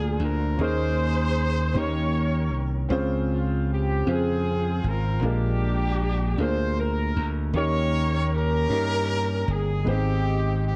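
A dark, warm production with light reverb and a small-room ambience frames this reverent, hopeful slow gospel fragment, taken from a longer piece, in 6/8 at 52 BPM. A loose, jazz-style horn section with vibrato and a smooth top carries the melody up front, touched by slapback echo, while a warm, natural grand piano accompanies and a bright, punchy electric slap bass sits boldly forward beneath them. All three play throughout as the harmony moves from Bb7 through Eb7sus4, Eb7 and Dbmaj7, settling on Abmaj7 at 9.9 seconds.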